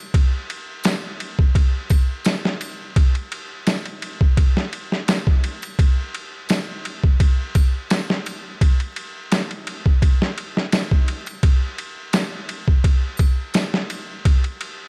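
Brooding and smoky, this trip hop excerpt rides a gently swung groove on a sampler-style boom bap kit that sits up front, its thumpy kick, medium-tuned snare and ride cymbal sounding gritty, compressed and pitched down with a tape-warm edge. From 0.8 seconds a small-room layer of triangle, tambourine, egg shaker and group handclap stays in the background. The dark production carries vinyl crackle and little reverb, keeping the sound close and dry.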